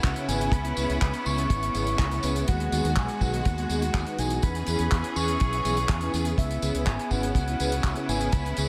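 A tight, dry kick drives this melodramatic, nostalgic Italo disco fragment alongside a damped 70s kit of handclaps, hi-hat and tambourine, a bright fingered bass with an envelope filter, biting, distant studio strings holding chords, brassy detuned synth stabs with chorus and a cassette-tape tint entering at 0.2 s, and a soft octave-layered synth lead carrying the melody through chorus and diffuse delay over C#m7, G#m7 and E6, all bathed in a lush, dreamy hall reverb.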